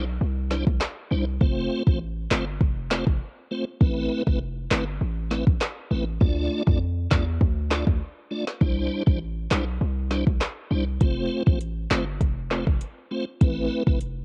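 A straight 4/4 dancehall groove at 100 BPM, cut from a longer piece, sets a sunny, bouncy mood as a punchy, heavy 808-style bass with a noise layer, fast attack and decaying tone starts at 0.0 seconds alongside a piping, scooped tonewheel organ whose light overdrive, chorus vibrato, key click, fast rotary speaker, sidechain pumping and cassette grit color the chords from Cadd9 through F, Amadd9 and Dm, while an electronic afro-pop kit with a deep kick, woody snare, metallic hats and handclaps enters at 0.5 seconds, all dry and up front in a home cassette recording.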